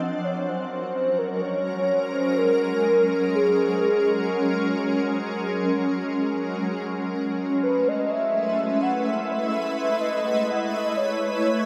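A shimmering, ethereal pad sits up front in this peaceful, weightless ambient excerpt at 63 BPM, its detuned unison chords sustained with a slow attack, long release and granular octave-up glow, moving from Gbadd9 to Aadd9 at 7.2 s. Over it a velvety, full-bodied synth lead carries the melody with vibrato, chorus and analog delay, while a very quiet, bell-like celesta, slightly out of tune, enters at 0.5 s with delicate arpeggios. A wet spring reverb gives the mix an echo-heavy sheen.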